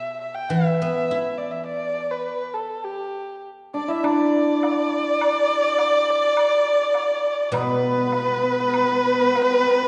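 Set in a rubato 2/4 at 102 BPM, this festive, graceful passage of Chinese traditional chamber music is cut from a longer piece. A dark, woody erhu carries the melody up front throughout, bowed by one player with light vibrato and portamento and a smooth top. A guzheng enters at 0.5 s, played with fingerpicks and sounding silvery and ringing in short accompaniment passages. From 3.7 s a second erhu, warm and focused with vibrato and portamento, joins a bright, shimmering hammered dulcimer on a second line, and a woodblock sits in the background from 4.0 s as the music moves into a new section. The ensemble is heard from further back in a wet recital hall with a rolled-off top end.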